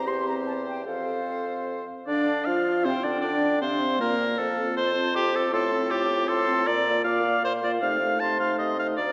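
This quick classical-period movement for wind quintet, cut from a longer piece, moves at 156 BPM in a straight 3/4 with a spirited, graceful character. The concert flute carries the melody with an airy, straight tone and soft attack, sitting distant in the blend. The oboe plays the second line and stands up front, its warm sound carrying light vibrato and a smooth top. The clear clarinet and a mellow, roomy French horn fill in the accompaniment, while the bassoon supplies a vintage-tinged bass line with its own light vibrato. A short opening passage gives way at 2.1 s to a longer second section, with the harmony moving through C/E, F, Csus24 and Bb before settling on F7/C near 7.8 s. Concert hall reverb with a 1.8 s decay wraps the quintet in a wet, resonant space.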